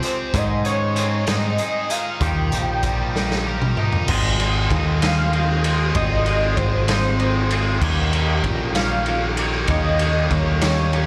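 In this upbeat, carefree indie rock excerpt at 64 BPM in 6/8 and Ab major, a punchy, gritty garage drum kit with dark cymbals and a fill from 3.1 to 4.1 s, a bright overdriven guitar riff drenched in lush chorus, a clean, twangy fingered guitar riff with slapback echo in the background, and a fat, detuned sawtooth synth lead carrying the melody with vibrato, chorus and slapback echo all start together, joined up front at 0.3 s by a growling, overdriven picked bass, the band captured as a live club gig through the venue's PA over chords moving from Ab to Eb7.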